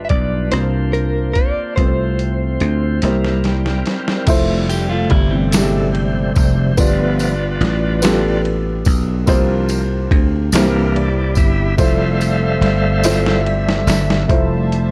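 A clean, direct-recorded electric guitar opens this reverent, hopeful slow gospel passage in 6/8 with a short tremolo-and-slapback melody, over a dark, mellow grand piano, a reedy tonewheel organ through a slow rotary speaker and light overdrive, and a punchy, growly thumbed slap bass up front, while a gritty, pitched-down boom bap kit with a thumpy kick brings a fill before the organ takes a solo at 4.3 seconds. A jingly tambourine and a brief picked second guitar line join under the solo, and veiled, muted strings arrive only at 14.3 seconds as the fragment closes. The production is dark and softly ambient, with light reverb.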